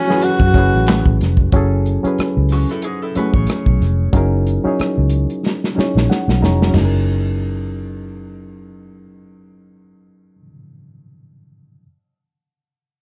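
A breathy tenor saxophone opens this late-night, introspective neo-soul and R&B excerpt: a mellow, jazz-style phrase with scooped notes and light vibrato, heard up front with slapback echo and plate reverb until it stops at 1.2 seconds. A reedy, worn electric piano, slightly out of tune and heard through its built-in speakers, carries the accompaniment throughout. In the opening moments, a very quiet, lush bowed string section holds sustained chords. The soul drum kit sounds smooth and up front in a small room, with a rolled-off top, punchy kick, medium-tuned snare, rim click, handclaps, hi-hat, toms and crash; its fill, joined by an electric piano fill, leads into the final section. A round, foam-muted fingered bass sits up front underneath, and from 2.5 seconds an electric guitar through a small old amp adds a slightly broken-up, lo-fi second line as the harmony moves from F#m9 to F#13 over a swung sixteenth-note feel, all within a dark, warm production with light reverb.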